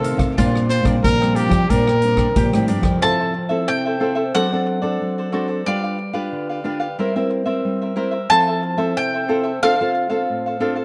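A double-strung bowl-back mandolin takes a picked solo from 3.0 seconds in this playful, lively samba-and-choro excerpt, following a clear, up-front jazz trumpet melody that ends at 2.7 seconds and a swinging big-band drum kit with punchy kick, hi-hat and rim click that drops out together with a fingerpicked nylon-string guitar bass, while a crisp cavaquinho and a warm classical nylon-string guitar with fresh strings and finger squeak carry the accompaniment throughout, set in a moderate spring reverb heard from further back in the room.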